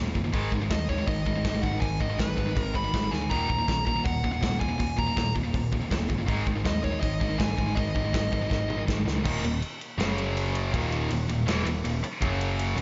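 A straight 4/4 pulse at 161 BPM drives this aggressive, relentless heavy metal excerpt in Eb phrygian, where a bright, high-gain guitar riff and a tight distorted guitar in the background play alongside a growly, punchy overdriven bass and an up-front drum kit with bright cymbals and a tight kick, while a dark, smooth lead guitar with overdrive and digital delay sings above from 0.7 to 8.8 seconds. A very quiet, double-tracked sludgy guitar joins at 9.2 seconds, and a drum fill at 8.5 seconds ushers in a half-time passage at 9.3 seconds, all set in a lush hall reverb with a big arena sound.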